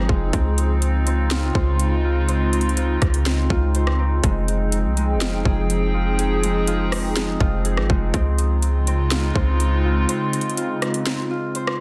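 Atmospheric cloud-rap hip hop at 123 BPM in a half-time 4/4 feel, spacious and melancholic, built on a warbly, detuned tape-like pad whose dark, nostalgic sustained chords move from Dbmaj7 to Fm7 and back, treated with chorus, phaser, reverb and sidechain pumping. A thumb-plucked Celtic harp rings out arpeggios through tape echo, while a boomy, sine-like 808 bass and a trap kit with a hard-clipped kick, sharp snare, metallic hats and rim clicks, re-recorded in a large room, both sit up front. The bass drops out at 10.1 seconds for a closing break, leaving pad, harp and drums in this short cut from a longer piece, all under a dense, heavily limited master.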